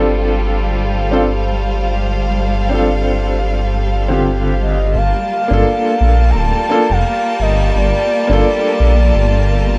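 Brooding and hypnotic, this trip hop excerpt rests on a dark detuned saw bass that rumbles up front with tube saturation, beneath a woody upright piano carrying tremolo, vintage 12-bit sampler grit and tape echo. A rich violin section holds sustained bowed chords through a low-pass filter, while a grainy, flickering texture sits in the background with its own built-in reverb. At 4.6 seconds a pure, breathy sine lead enters with the melody, softened by chorus and tape echo, as the harmony moves from G9sus4 to Gm9 in a light studio ambience.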